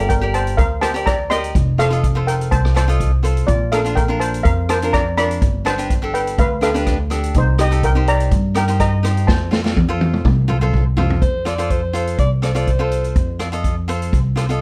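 Carefree and festive, this calypso excerpt moves at 124 BPM in 4/4 with a light sixteenth-note swing, tuned slightly low to A4 = 436 Hz. A shimmering, metallic double-seconds steel pan carries the melody up front, struck with medium rubber sticks, over a chord cycle of Gm, F7, Bb, G7, Cm7 and F. A bright, crisp picked cavaquinho fills in the accompaniment while a woody pizzicato upright bass with steel strings sits prominently underneath. A vintage acoustic drum kit in a natural studio room adds a punchy kick, a medium-tuned snare, rim clicks, hi-hat and toms with a rolled-off top, and plays a fill from 9.3 seconds as the steel pan drops out at 10.7 seconds. At 11.2 seconds a breathy alto saxophone with light vibrato and a smooth top takes a brief second line, all within a dark, warm production bathed in light reverb.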